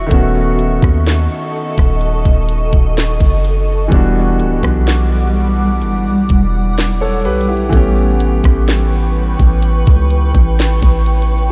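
Over a straight 4/4 pulse at 63 BPM, up-front electronic trap drums with a knocking kick, sharp snare and bright hats enter at 0.1 seconds alongside a deep, boomy sine 808 bass, an intimate concert grand piano with audible action noise and long sustain, and a blurred, evolving granular cloud pad bathed in its own reverb, all set in a light digital ambience as this longing, moody contemporary R&B excerpt in E dorian moves from B9/D# through Em9 to A9.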